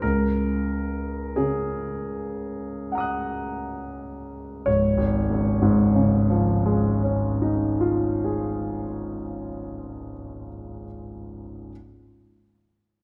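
Classical impressionist solo piano, serene and luminous, drifting in a slow 3/4 at roughly 32-47 BPM with a free, rubato feel in D-flat major, tuned to A4 = 439 Hz. A single concert grand carries the whole piece from 0.0 to 11.7 seconds, its clear tone spanning from a deep bass Db1 up to Gb6 and sitting up front in an open sound. The opening phrase rests on an Ebm7 over a D-flat bass and gradually slows through its first 4.7 seconds. At 4.7 seconds a second passage begins and settles onto a Dbadd9 chord. A wet concert hall reverb with a 1.9-second decay surrounds the piano, letting each chord bloom and linger in the space. The recording is cut from a longer piece.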